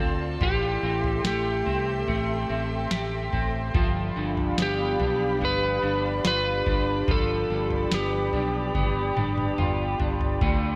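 A slow, straight 4/4 pulse at 72 BPM comes from a booming analog drum machine that enters at 0.4 s, its deep kick, tonal snare and toms treated with gated reverb, and a drum fill arrives at 8.7 s. This dream pop piece, cut from a longer work, feels ethereal and hazy; it is tuned to A4 = 445 Hz and moves from Am7 to G7. Up front, an electric slide guitar played with fingerpicks carries the melody through delay, slightly broken-up in tone, until 10.0 s. Alongside it, a dark electric guitar at the edge of break-up plays arpeggios with subtle chorus and delay. Beneath, a round fretless electric bass holds the low end, while an airy pad of detuned sawtooth unison, with a slow attack and ensemble chorus, sustains chords high above. A lush hall reverb and bright 1980s-style digital production give the recording its glossy sheen.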